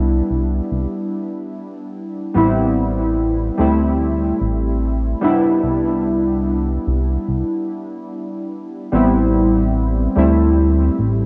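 Warbly lo-fi synth keys, airy and mellow with lush chorus and analog delay, float over a dark, glossy chorused synth bass in this nostalgic, woozy vaporwave excerpt, moving through Cmaj9, Am7 and D9sus4 chords under a moderate plate reverb and the worn, drifting pitch of old cassette tape.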